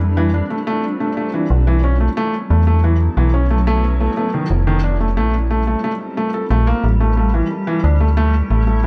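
A granular cloud pad and a metallic FM bass open this eerie, glitchy IDM fragment together, with a felt-muted upright piano joining at 0.2 seconds. Set at 90 BPM in a straight 4/4, the track moves through sustained suspended ninth chords, starting on C9sus4 and passing through B9sus4 and F9sus4 before landing on A9sus4 at 6.8 seconds. The pad sits low in the mix as a blurred, detuned haze that slowly evolves, softened further by its own built-in reverb. Up front, the bass is digital and fast-attacking yet mellow, its decaying tones thickened with tube saturation. The piano spins soft, intimate arpeggios where thin felt and audible action noise come through, roughened by vintage 12-bit sampler grit and carried on a tape echo. Light studio ambience and a dark, warm production wrap this brief section, which is cut from a longer piece.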